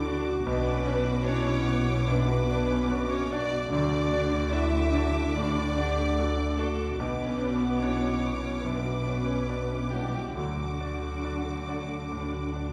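Over a loose, rubato 73 BPM pulse in 4/4, this bittersweet, longing cinematic fragment in B minor, cut from a longer piece, alternates Bmadd9 and D chords as a rich, vibrato-laden studio violin section sings its expressive melody on a high D6, while a smooth symphonic violin section and a mellow background clarinet weave second lines, a brilliant grand piano, a clear viola section and a ringing, thumb-plucked concert harp add accompaniment and arpeggios, a very quiet, tight French horn section holds sustained chords, and a focused double bass section joins a soft-attacked cello section, gliding with portamento, on the bass, all within a wet recital-hall reverb.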